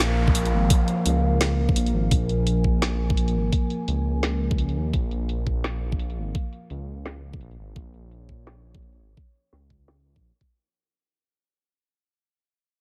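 A dark, chorused analog pad with sidechain pumping, an up-front, rumbling detuned saw bass, a brief electronic downlifter and a kit with overdrive, woody snare and bright, low-pass-filtered hats open this tense, cinematic half-time drum and bass excerpt in Bb minor at 170 BPM with swung 16ths, joined at 0.3 seconds by a knocking electronic kick that also runs through overdrive, while a filter sweep moves across the drums and the whole excerpt fades out inside a digital ambience.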